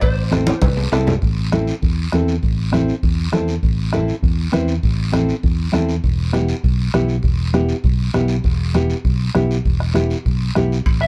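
A fiery, passionate cumbia in A minor at 200 BPM opens with everything but the nylon-string guitar: a dark, slightly broken-up electric guitar with spring reverb picks a brief melody between C5 and E5, over a round, punchy fingered electric bass, a close and dry soft-beater bombo, thin-skinned, low-tuned congas, raspy guiro, and ringing metal-shell cowbell and timbales. A drum fill carries the short opening into the main section, and the cowbell and timbales drop away just before it ends. At 0.3 seconds, a bright, full-bodied, thumb-plucked nylon-string guitar enters up front with a deep classical tone. It carries the accompaniment between B3 and B4 while the amped bass, bombo and very quiet, vintage, band-limited congas keep the straight 4/4 feel moving. The harmony rests on Am before shifting to Em at 6.0 seconds, and the electric guitar and the cowbell and timbales return only for a moment at the very end of this excerpt. 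The production is dark and warm with light reverb.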